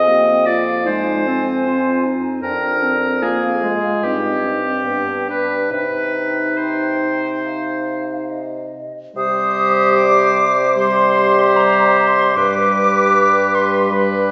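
A slow, romantic classical movement for wind quintet in C minor, this elegiac and solemn passage moves with a rubato 4/4 pulse around 68-78 BPM and is cut from a longer piece. A hollow, pure-toned concert flute carries the melody high above the ensemble, close-miked and sung with vibrato and tongued articulation. The oboe sits up front with a second line in its middle register, while the clarinet and the French horn, the latter with a light vibrato, fill in the accompaniment from a roomy, distant position, the clarinet tucked into the background. A mellow bassoon anchors the bass, and the harmony settles from an opening Fm7 through a diminished chord onto C minor by 5.7 seconds, with a shift into a new section at 9.2 seconds. The whole group is heard from further back in a scoring stage with a generous, wet reverb and a softened, dark top end, lending the music a grave, veiled quality.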